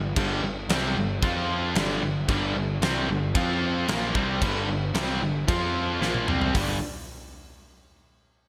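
A straight 4/4 beat at 113 BPM drives this swaggering, anthemic hard rock clip. A bright, overdriven electric guitar riffs up front over G5 and F5 power chords, with a chorus-tinged cranked stack guitar behind it and a punchy fuzz bass underneath. A big drum kit with a fat gated snare and a punchy kick pounds along throughout and plays a fill from 6.0 to 6.6 seconds over an Fsus24/Bb chord before the riff lands back on G5, all in a bright 1980s-style digital production with a light small-room reverb.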